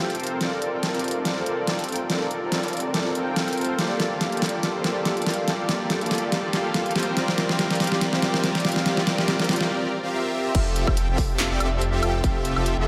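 Drenched in lush hall reverb, this dreamy, playful future bass clip from a longer piece rides a swung half-time groove. A smooth, detuned supersaw riff sits up front, pumping against the sidechain and trailing analog delay as a low-pass filter sweep shapes it through the build-up. A thick, chorused saw bass hums very quietly beneath, and an overdriven dubstep kit with a deep snare, handclaps, hi-hat, woodblock and crash cymbal rolls through a long fill. A brief break at 9.7 seconds leads to a cheerful drop at 10.5 seconds, where a punchy, overdriven electronic kick joins over a lush Fmaj9 chord.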